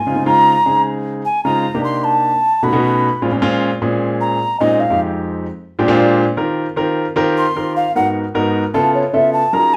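Driving and sophisticated, this jazz passage at 152 BPM in a straight 4/4 sets a breathy, reedy alto ocarina up front on the melody throughout, its warm clay tone tongued with rolled-off highs, and touched with slapback echo and plate reverb. A concert grand piano accompanies from 0.1 s with deep bass, long sustain and audible action noise, adding a polished fill from 5.6 s to 6.4 s as the harmony moves through chords such as Dbmaj7, Bb13 and Db7alt. The wet studio room sounds heard from further back, and the clip is cut from a longer piece.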